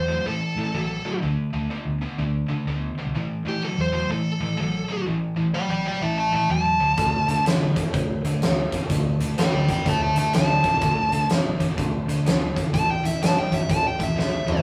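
A rough rehearsal-room recording with tube saturation and moderate studio reverb frames this smoky, gritty blues rock and southern rock power-trio excerpt at 125 BPM in a swung 4/4, where a dark, smooth overdriven lead guitar carries the melody over a bright, double-tracked distorted riff guitar and a round, foam-muted fingered electric bass, until a big-room arena drum kit with a fat snare and punchy kick enters at 7.0 seconds and finishes on a fill at 14.2 seconds.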